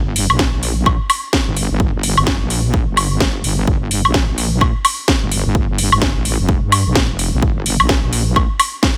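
A dry excerpt of aggressive, bouncy bass house in G minor at 128 BPM with a 16th-note swing, where a heavy, saturated sawtooth wobble bass with chorus, overdrive and sidechain pumping sits up front from 0.0 seconds, joined by a house drum kit of cracking snare, metallic hi-hats and woodblock in studio reverb, and by a punchy, tape-warm electronic kick drum entering at 0.4 seconds.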